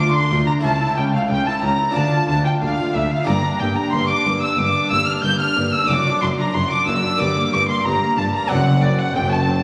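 Heard from the first second, a dramatic, stormy baroque-style concerto movement at 92 BPM sets a solo violin with a rich, reedy gut-string tone and light vibrato against a background violin section on the melody and a softer second violin line, all playing through to 9.6 seconds. Beneath them, a close-miked, dry Flemish-style harpsichord with two sets of strings fills in the harmony alongside a bowed viola section, while the double basses and a more distant cello section carry the bass line through chords moving from Dm to Gm and on to D7/F#. The whole is cut from a longer piece and sits in a wet recital hall with a 1.7-second reverb and a layer of vinyl crackle.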